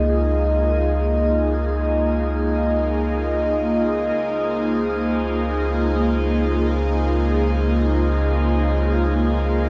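Drifting in free time in Db major, this luminous, weightless ambient fragment layers a breathy, detuned pad up front with chorus, phaser and shimmer reverb over a round sine sub bass on Db2, while a reedy hand-pumped harmonium drone breathes in the background and a pure, beating glass harmonica adds ethereal shimmer high above, all four sounding together from 0.0 to 9.7 seconds in a vast, echoing cathedral space.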